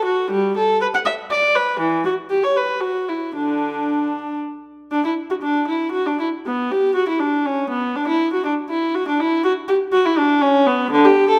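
A close, up-front solo viola sits in the wet reverb of a recital hall, its gut-string tone airy and faintly nasal in a period style. This flowing, radiant baroque-style suite movement in D major moves in 3/4 at 120 BPM with a rubato feel, tuned to A4 = 441 Hz. A single bowed player ranges from D3 to F#5, stating the opening section and then returning to it at 4.9 seconds in this short cut from a longer piece.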